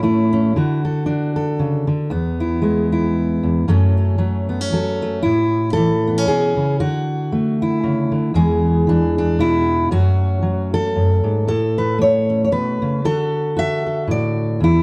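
Nostalgic and gentle, this short folk fragment features a solo fingerpicked steel-string acoustic guitar in a lilting, lightly swung 3/4. The full-bodied jumbo guitar sits up front, cycling through A, Dadd9, E and F#m, with a second passage beginning at 5.2 seconds. A moderate studio reverb surrounds the playing, and the dark production carries lossy compression artefacts.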